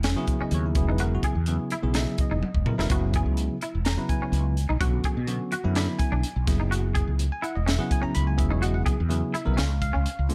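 Electric jazz fusion at 126 BPM in a straight 4/4, tuned to A4 = 437 Hz, soaring and funky. A crisp acoustic drum kit in a pumping small room, with a high-tuned snare, punchy kick, hi-hat, toms and a fill at 2.4 seconds, sits up front beside a dark, round fretless bass colored by analog chorus. A bright, bell-like tine electric piano enters at 0.2 seconds over chords moving from F#9sus4 through Emaj9 and Bmadd9. Quieter twangy, compressed, picked guitar stabs are dressed in ensemble chorus, all in a dry mix cut from a longer piece.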